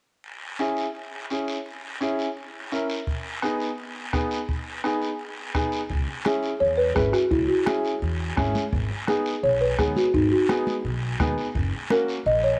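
A home cassette recording with light reverb and studio ambience carries this driving, fiery cumbia excerpt at 170 BPM, where a raspy guiro and a clear, up-front upright piano with a fill at 2.5 seconds open over C#m and G#m, a soft-beatered bombo joins at 3.1 seconds, and at 5.9 seconds a thumpy pizzicato upright bass and bright, damped congas arrive just before a mellow, round folk marimba with soft mallets takes the melody up front, ending on F#.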